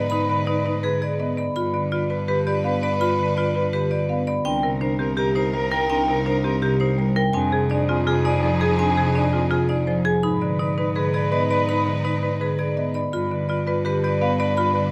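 Hypnotic and urgent, this minimalist classical pattern piece drives forward at 166 BPM in a straight 4/4, set in C harmonic minor and tuned slightly high to A4 = 443 Hz. A bright, metallic vibraphone struck with hard mallets carries the ringing melody, its motor vibrato shimmering above the texture, while a mellow soprano saxophone sounds a distant, roomy second line with classical-style vibrato. Two marimbas fill the middle: one with medium hard mallets on rosewood bars spins woody, mid-forward arpeggios, and the other, played with medium mallets, gives a dry, full, close-miked accompaniment from the lower register. Alongside them, a smooth, even studio string section holds bowed chords, and a single close cello anchors the bass with a rich, bowed tone. The harmony moves through Abm, G, Cm7 and Fm7 before returning to Abm at 10.2 seconds and G at 13.1 seconds. Light reverb and detailed microphone placement keep the patterns clear in this short section cut from a longer work.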